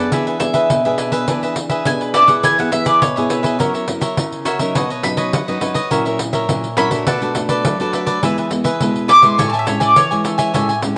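Samba and choro at 104 BPM in a sunny, playful mood, this cut from a longer piece features a round, up-front picked mandolin carrying the melody as a solo with slapback echo, over crisp, bright cavaquinho, full-bodied fingerpicked classical nylon-string guitar with audible finger squeak, and jingly, close pandeiro played with soft hands, all set in a moderate plate reverb as the harmony moves from E7 through F#7 and Bm7 to Amaj7.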